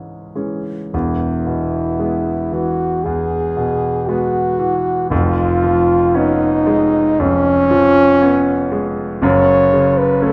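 Melancholic and solemn, this romantic classical duo for French horn and concert grand piano moves at a slow 50-61 BPM in 4/4, shaped with a flexible rubato feel. The clear, smooth piano opens alone at 0.0 s as accompaniment, with deep bass and a vintage character, before the warm French horn enters with the melody at 0.9 s. The horn sits up front as the solo voice, singing in a classical style with a light vibrato, while the piano also stays close and present beneath it. The harmony passes from C#m to E, then to C#7/E# at 5.1 s before settling on F#5 near the end. A moderate recital hall reverb lends the pair a natural sense of space in this short passage cut from a longer piece.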